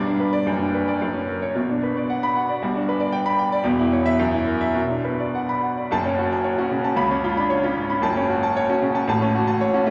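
A clear concert grand piano, up front and natural with a deep bass reaching down to E1, plays a stormy, passionate virtuoso classical study alone in 2/4 at 102-118 BPM with free rubato, moving from B minor to F# minor at 5.9 s under the long wash of a church reverb in this passage cut from a longer piece.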